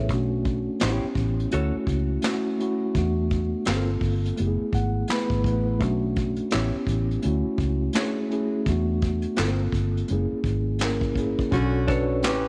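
A lazy swung sixteenth-note groove in four sets up this sultry, soulful neo-soul R&B excerpt, carried by a brushed drum kit with a tight kick, a medium-tuned snare, hi-hat and handclaps, its top end rolled off in a small room. Underneath, a dark, foam-muted fingered electric bass sits up front with a round, amped tone. A mellow tine electric piano, clean and heard through its built-in speakers, lays down lush chords such as Bm9, Gm11 and F#m11 and breaks into a fill at 4.4 seconds. From 0.8 seconds, a hollow-body jazz guitar adds a picked, compressed second line with a shadowy, subdued color. Near the close, at 11.5 seconds, a jazz-style saxophone section lands ensemble stabs with light vibrato as the progression returns to Bm9, all bathed in light small-room reverb.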